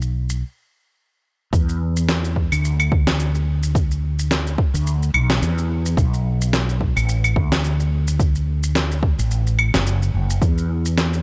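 A dry, close sound with little reverb frames this hypnotic, warm excerpt of organic downtempo, moving at 108 BPM in 4/4 with a light 16th-note swing. A dark, round fretless electric bass sits up front from the start, its tone thickened by tube saturation and an ensemble chorus as it moves between F#1 and E2. Alongside it, a sampler-style kit of electronic shaker, claves and a fat, gritty snare sounds compressed and tape-warm, carrying the air of a large room. After a brief stop between 0.4 and 1.5 seconds, a deep, layered electronic kick enters up front at 1.5 seconds, its overdrive adding weight beneath the groove. From there the bass, kick and percussion settle into a hypnotic pulse until the kick drops out at 10.5 seconds, leaving bass and percussion to close the clip.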